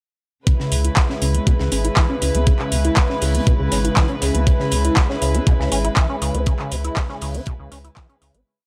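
A four-on-the-floor electronic kick thumps up front at 120 BPM in straight 4/4, joined by metallic analog hats and handclaps on the backbeat, with a very quiet looped breakbeat of hi-hat and high-tuned snare underneath, all driving this short, hypnotic acid house piece in C# minor over a C#m7 chord. A rubbery, resonant sawtooth acid line with accents and slides runs through a filter sweep, colored by tube saturation, lush chorus, cassette tape and tape echo, while a round sine sub bass plays off-beat notes from 0.7 seconds and dark, floating bowed strings hold sustained chords, both pumping against the kick. The sound is dry and gritty with little reverb, and the groove fades out from 5.8 seconds to the end at 8.5 seconds.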